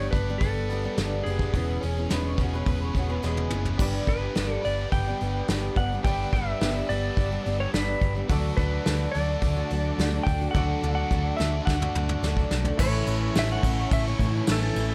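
A clean, compressed lap steel carries the melody with slide and volume swells through digital delay in this jangly, open-road folk and heartland rock excerpt, over a shimmering, octave-doubled twelve-string acoustic, a biting, double-tracked overdriven guitar riff, a round hollow-body bass and a brushed drum kit up front; a lo-fi, slightly broken-up guitar through a small old amp adds a brief spring-reverbed line from 2.1 to 3.7 seconds, and at 3.8 seconds a very quiet grand piano with audible action noise and veiled, con sordino strings enter, inside a dark, lightly reverberant production.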